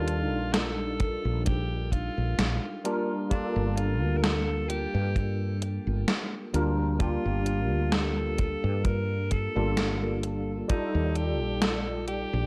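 Vaporwave at a slow 65 BPM in G minor with a lightly swung, hazy and woozy feel, this short cut from a longer piece sets an edgy, forceful alto saxophone melody with tape echo over a barky tine electric piano with ensemble chorus, a growly, round fretless bass with analog chorus, a gated, overdriven 80s drum machine on hi-hat and snare, a dry, dark acoustic kick from 1.0 seconds, and a silky, warbling string machine that enters in the background at 10.7 seconds, all moving between Ebmaj9#11 and Gm9 in a gritty, cassette-toned recording.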